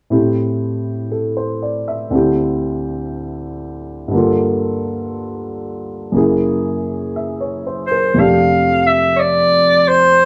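Recorded live in one room with a moderate studio reverb, this short, swung jazz passage, cut from a longer piece, has a romantic, tender mood. A woody upright piano sits up front from the start, comping through rich, drifting chords that settle onto a major sixth harmony. At 7.9 seconds a bright, forceful clarinet enters with a vibrato-laden solo line in a jazz style and carries the melody to the end at 10.3 seconds.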